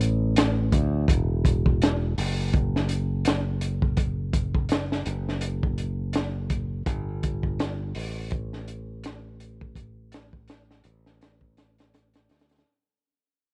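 Worn cassette tape gives this dry, close trip hop fragment a warbling drift in pitch, lending it a melancholic, hypnotic haze as it fades out from 1.1 seconds to its close at 12.7 seconds. A crunchy, saturated breakbeat kit sits up front in a small room, its punchy kick, high-tuned snare and hi-hat sounding dark and gritty with a rolled-off top, all swung on the sixteenths. Beneath it, a bright, growly fingered electric bass moves between E1 and D2, direct and forward in the mix.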